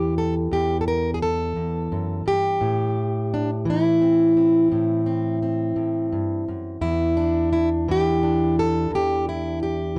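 Smoky and mournful, this slow acoustic country blues fragment in E minor sets a lone, bright, fingerpicked steel-string dreadnought up front in a small, dark-toned room, moving from Em to Am7 at 2.6 seconds and Em7 at 6.8 seconds over a 12/8 pulse at 57 BPM.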